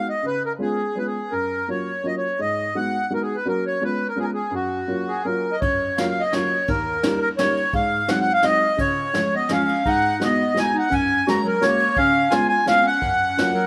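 A reedy, airy accordion leads this nostalgic, whirling musette waltz from the start, sitting up front with a slow beating shimmer and a touch of slapback echo as it carries the melody in F# major. Beneath it, a dark upright piano supplies the accompaniment with a mellow, worn, slightly detuned tone and short, boxy sustain, also touched by slapback echo. The tempo is 170 BPM in 3/4, played with a rubato feel, and the harmony moves through chords such as C#7, F#maj7 and G#m7. At 5.6 seconds a vintage drum kit enters, played with brushes, its kick, snare and dark ride cymbal sounding distant and roomy with a rolled-off top. A breathy clarinet joins at 9.3 seconds as a second line, clear and present with light vibrato and a soft subtone in a jazz style, with its own slapback echo. The overall sound is dry, with little reverb, and the recording is cut from a longer piece.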